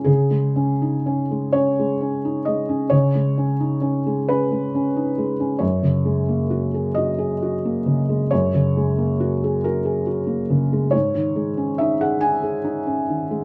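Neoclassical minimalist piano, reflective and wistful, drifting in a rubato 6/8 at roughly 40-47 BPM counted in dotted quarters. A solo felt-muted upright piano, soft and intimate and placed up front in light reverb, spans F#2 to G#5 across this brief 13.4-second excerpt from a longer piece. Its harmony moves from C#sus2 to F#add9 at 5.6 seconds, then settles on C#sus2/G# at 10.9 seconds.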